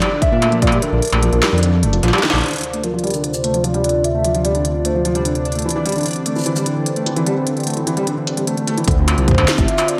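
A wet recital-hall reverb gives this melancholic, cerebral IDM excerpt, cut from a longer piece, a big arena sound. A felt-muted upright piano plays soft arpeggios through vintage 12-bit sampler grit, a low-pass filter, digital delay and slapback echo, its action noise audible, while a warbling, nostalgic lead carries the melody with chorus, phaser, tape echo, slapback echo and vibrato. Up front, an industrial drum kit of crisp hats, shaker, clanging snare and struck metal runs throughout, joined by a heavy electronic kick and a deep, rumbling detuned saw bass that both drop away early and return together at 8.9 seconds. A drum fill and band accent lead into a smooth analog pad with a moving notch at 2.4 seconds, and from there both the pad and the piano take a filter sweep. A pulsing, tempo-synced gated texture sits in the background under chorus and its own reverb, as the harmony moves from Bb to Dm7 and Cadd9 before settling back on Dm7.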